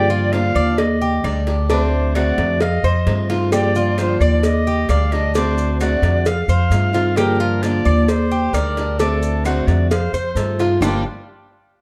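Danceable and nostalgic, this 11-second cut from a longer Cuban son and guajira piece moves at 132 BPM in straight 4/4 in G minor, cycling Gm7, Ebmaj7, D7 and F7 over a dark, warm production with moderate large-studio reverb. An up-front pizzicato upright bass anchors a boxy picked archtop guitar and a metallic, double-strung tres playing arpeggios through tape echo, while an airy silver concert flute with vibrato and rolled-off highs carries a reedy second line. Tight, high-tuned cowbell and bongos enter at 0.3 seconds, very quiet woody claves follow at 0.6 seconds, and grainy maracas join in the background at 3.5 seconds.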